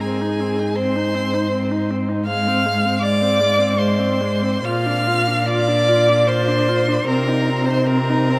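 In a rubato 3/4 at 68-81 BPM, this lyrical passage from a slow romantic string quartet movement has a distant first violin singing the high melody with vibrato and portamento, a focused second violin carrying an up-front inner line, a smooth-topped viola filling the accompaniment and a close, even cello holding the bass, all bowed with rich vibrato as the harmony moves from Ab through Fm/Ab and Bb to Cm7 in a vast, echoing cathedral space.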